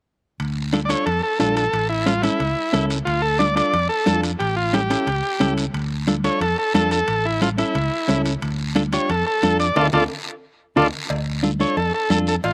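Cumbia in D harmonic minor at 179 BPM, driving and fiery, led by an up-front overdriven combo organ whose buzzy, heavily vibrato-laden melody rides over a round, amped fingered electric bass and a clean, picked, compressed electric guitar accompaniment moving between Dm and A chords. Underneath, a raspy, close and dry guiro sits with thick-skinned congas and ringing timbales and cowbell carrying a slapback echo, both set in the background. The band hits an accent from 9.8 to 11.1 seconds, with a drum fill from 10.1 seconds, in this dry, outdoor-sounding cut from a longer piece.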